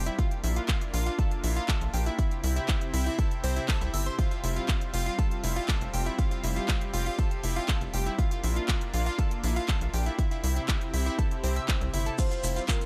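A punchy, up-front electronic kick drives this hopeful, uplifting progressive house excerpt at 120 BPM in a straight 4/4, joined by a house drum kit of crash cymbal, handclaps and crisp hi-hats, both set in a studio ambience. Beneath them, a tight sequencer bass built from sawtooth and square waves pulses with a fast-attack filter pluck, sitting low and driving under the beat. A round analog pluck spins arpeggios through chorus and delay, its detuned tone carrying a noise layer and a filter sweep, while a lush, thick unison pad holds sustained chords with a warbling, vintage 12-bit sampler grit. The bass, pluck and pad all breathe with sidechain pumping over a hopeful progression moving from Bb to C to Fsus2. Just at 12.2 seconds, a soft octave-layered synth lead with a dark, full tone, tremolo, vibrato and tape echo enters alongside a grainy shekere tucked in the background, and the mix stays dry with little reverb overall.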